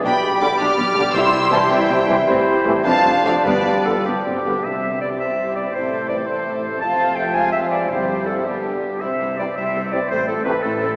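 Dramatic and urgent, this classical passage in 6/8 moves with a rubato lilt at around 99-114 BPM in C major, as a rich, distant studio violin section carries the melody over a bright, up-front solo clarinet, clear oboe, pure flute section and a very quiet, lush symphonic violin section, while a dark viola section, a mellow bassoon that drops out at 4.5 seconds, and a focused double bass section with a close cello section fill out the lower lines, a dark French horn section and tight trombone section hold very quiet sustained chords, and round soft-mallet timpani sound from 1.1 seconds, all set in a wet church reverb with a small-speaker sound.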